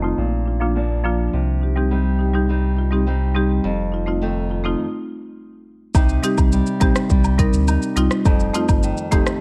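Dancehall in C minor at 104 BPM, hypnotic and bouncy, cut from a longer piece: a woody, dark marimba and a fingerpicked classical nylon-string guitar play filtered arpeggios and accompaniment over a deep, sine-toned sub bass with octave, moving through Bb, Cm and F7 under a filter sweep until a stop at 4.8 seconds. At 5.9 seconds an electronic afro-pop kit with a deep kick, smooth hats, rim click and shaker arrives up front, joined by woodblock and cabasa sitting close in the background. The whole piece carries a worn, warbling cassette-tape character in a small room.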